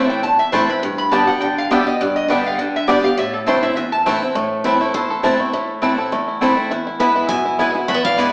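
A swung eighth-note feel in four drives this bluegrass excerpt, giving it a pushing yet haunting character over a minor-key chord cycle. A boxy, up-front swing-style acoustic guitar carries the accompaniment with bright picking and audible finger squeak, while a round, double-strung mandolin adds stabs. The lap resonator guitar sets the tone from the start with a metallic, nasal slide solo played with a steel bar and fingerpicks, continuing as a second line once the first half passes at 4.4 seconds. A mellow, twangy banjo, set further back in the mix, enters on the melody at 0.5 seconds, and a full-bodied dreadnought steel-string guitar joins the melody at 4.6 seconds. The whole band sounds as though it is playing live in one room, bathed in a wet, large studio reverb yet heard through a small speaker.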